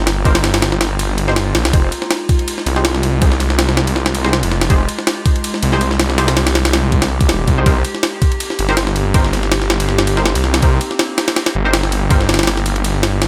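Drum and bass with a jungle flavour, this short excerpt runs at 162 BPM in F minor with a lightly swung sixteenth feel, and its mood is at once nostalgic and frenetic. A sampler-style jungle kit sits up front, gritty and compressed, with a thumpy kick, a high-tuned pitched-up snare and ride cymbal, all carrying a tape-like grain. Alongside it, also up front, a thick, detuned saw bass beats and menaces, saturated and sustained between Eb1 and Db2. In the background, a warbling, lo-fi pad holds mellow chords through chorus, phaser and its own reverb, while a muted, deep dub chord stab plucks and decays through chorus and dub echo. The harmony moves from Cm7 to Fm9 at 1.7 seconds and back to Cm7 at 7.7 seconds, the whole scene bathed in digital ambience, and the kick drops out at 12.8 seconds just before the cut.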